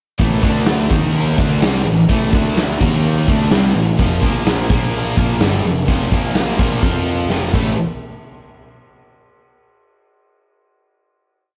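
Driving and heavy, this short hard rock piece in A phrygian moves at 127 BPM in 4/4, with a big, up-front acoustic drum kit (punchy kick, medium-tuned snare, crash) anchoring a power-chord riff played by two bright high-gain guitars in the background, one of them double-tracked, and a very quiet, dark, sludgy overdriven guitar, while a growly fuzz bass doubles the riff in driving eighth notes, all captured in a rough rehearsal-room sound with moderate stone-room reverb until a drum fill at 7.3 seconds leads into a final hit at 7.8 seconds.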